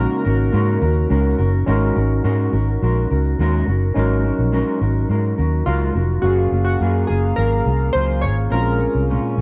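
A round, foam-muted electric bass sits up front in this lonely, mellow indie bedroom-pop fragment, beneath a dark, clean fingered electric guitar with lush chorus and vibrato, a barky, gritty overdriven tine electric piano, and a square-and-saw analog keys melody with chorus and tape echo that drops out at 1.4 seconds and returns at 5.7 seconds, while a warbling, detuned, nostalgic pad with chorus and built-in reverb hovers in the background, all captured dry on cassette tape.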